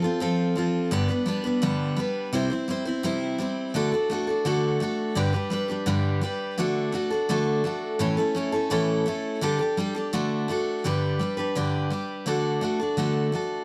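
A picked steel-string acoustic guitar plays alone from the first moment, its bright, full-bodied dreadnought tone sitting up front with the sheen of fresh strings and an audible finger squeak. This is sunny, heartfelt country in G major at a brisk 169 BPM, the guitar moving through G, C, D and A with a Dsus4 resolving to D, spanning G2 to C5. A moderate studio reverb gives the playing some air, and a new section begins at 10.8 seconds before this short cut from a longer piece ends at 13.6 seconds.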